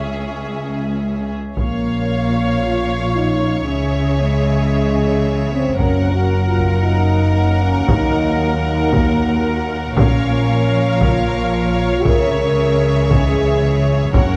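Hard-sticked taiko drums with a vintage, band-limited sound crash in at 1.6 seconds, driving this dramatic, epic orchestral film cue at 114 BPM in a straight 4/4. Before they arrive, a short build-up has lush bowed strings alone: a rich, focused violin melody sits close over a smooth, distant second violin line, intense bright violas and expressive cellos in the background. From 1.6 seconds, tight French horns and soft-attacked, roomy trombones hold sustained chords while a double bass section deepens the low end, all bathed in a wet scoring-stage reverb as the harmony moves from Dbm through Bbm, Gb and Ebm in this excerpt from a longer piece.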